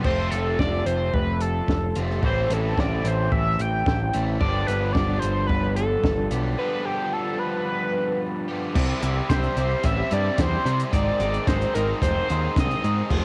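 A screaming, gritty synth lead with phaser and tape echo rides up front over a growling overdriven bass, two bright, overdriven guitars playing riffs in the background, and a compact cocktail drum kit with a punchy kick and dark cymbals, all captured on a cassette home recording of upbeat, jangly indie rock, with a break at 6.6 seconds and a very quiet tonewheel organ with key click entering at 8.7 seconds.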